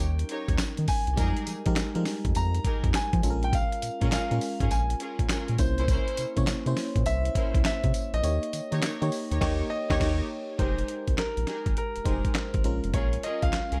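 A gritty, compressed sampler-style drum kit sits up front in this confident, slick new jack swing excerpt, its thumpy kick and medium-tuned snare joined by hi-hat, handclaps, tambourine and crash cymbal at 102 BPM with a 16th-note swing feel in F minor. Beneath it, a round analog bass with a deep, dark, evolving tone and a touch of ring modulation anchors the low end, while a glassy, bell-like FM electric piano with chorus fills in the chords over a progression built on Eb7, Fm11, Bbm7 and C7b9. A concert grand piano with a warm, natural sound carries the melody through a delay, and a lush symphonic string section adds bowed, vibrato-rich stabs from 0.3 seconds onward. The kick drops out from 8.2 seconds, the band hits an accent from 9.4 seconds, and a new section arrives at 10.6 seconds as the chords return to Fm11. The mix is dry, with little reverb.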